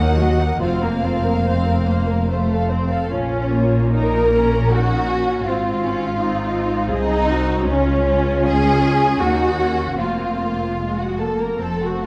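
This is a slow classical movement for string orchestra, elegiac and melancholic, in a flexible triple metre that breathes with rubato. A violin section carries the melody from a smooth, even place in the background, while a second violin section sits up front with a focused, lush second line. The violas add a clear, intense accompaniment, and the cellos and double basses share the bass, the cellos warm, smooth and even, the basses expressive and marked by portamento. Every section plays bowed with vibrato throughout the 12.1-second excerpt cut from a longer piece, and the music moves into a new section at 3.1 s as the harmony passes from Bbm through Ab and Db before returning to Fsus4. The production is dark and warm, set in a reverberant scoring-stage space with a long 2.1-second tail.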